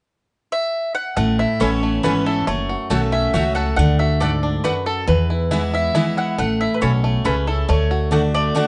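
An up-front mandolin carries the melody in this joyful, rustic bluegrass excerpt, entering alone at 0.5 s with a picked, double-string tone. At 1.2 s the band joins in a straight 3/4 at 138 BPM in A major, tuned to A4 = 443 Hz. A twangy, fingerpicked banjo adds a second melodic line in a lower register, and both lead instruments carry a plate reverb. A bright, full-bodied steel-string guitar sits up front with a picked accompaniment, while a thumpy, gut-strung upright bass anchors the low end. A second mandolin adds woody stabs. The chords move through Aadd9, F#m, D and E, return to Aadd9 and close on D, all inside a moderate studio room with a softened top end.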